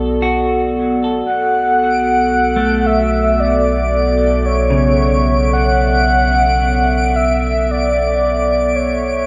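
Reflective and serene, this ambient excerpt drifts in a straight, unhurried 4/4, resting on a single Bm9 chord. A warbling, tape-like pad holds sustained chords with a nostalgic, lo-fi, detuned character, softened by chorus and its own reverb. Beneath it, a deep, round sub bass sits up front. A clean, hollow-body electric guitar picks arpeggios through delay until 8.8 seconds. At 1.3 seconds a breathy, flute-like synth lead enters with the melody, carrying vibrato, analog chorus, cassette tape colour and delay. A faint granular texture arrives with it, sparkling high above with an octave-up shimmer. The whole mix sits in a lush hall reverb with a dark, warm production and fades out from 7.0 seconds.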